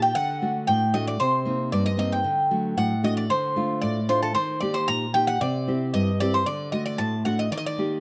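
Cool and brooding, this short cut from a longer Greek folk piece moves at 114 BPM in a straight 2/4, with a bright, metallic bouzouki carrying the melody on its double, partly octave-doubled strings over a full-bodied, fingerpicked nylon-string guitar whose finger squeaks come through the close, detailed miking, both up front in light reverb as the chords move from D through Cm7, Dm, Eb and C before returning to D.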